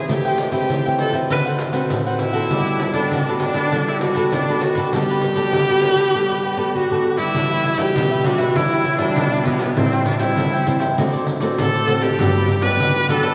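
Playful and festive, this samba and choro excerpt sets a rich, expressive bowed viola melody with vibrato and portamento over a crisp picked cavaquinho, a warm fingerpicked classical nylon-string guitar and a jingly, vintage-sounding, band-limited pandeiro played with soft hands up front, all bathed in the long, wet reverb of a cathedral-like hall.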